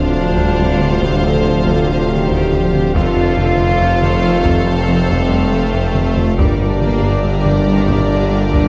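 A straight 4/4 pulse at 70 BPM carries this vast, brooding fragment of a hybrid orchestral and electronic film score, moving from Dm7 to F to Gm, with a compressed, saturated taiko ensemble struck with hard sticks entering very quietly at 0.6 s. A clear violin section sings the melody over a second, more distant violin line, while a lush viola section, mellow French horns with a soft attack, quiet, tight trombones and an airy, breathy pad with ring modulation sustain the harmony beneath a very quiet, tine-like FM pluck playing arpeggios. The low end is built from a rubbery, bouncy square bass riff, a vintage-toned tuba, lush bowed cello and double bass sections and a thick, deep sine sub bass, all set in a moderate scoring-stage reverb.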